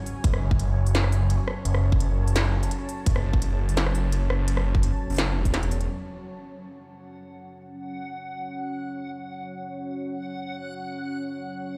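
A thick, swirling phased saw bass sits up front in this cinematic, heavy half-time drum and bass excerpt at 170 BPM in F# minor, driven by a tight, tape-warm electronic kick and an industrial kit of clanging snare, smooth low-passed hats and rim clicks until the bass and kit stop at 5.9 seconds, while a deep, moody pad with chorus and sidechain pumping holds sustained chords throughout and a bright, dreamy reversed granular texture enters at 7.1 seconds, the whole mix heard through a big sound system in a bare stone room.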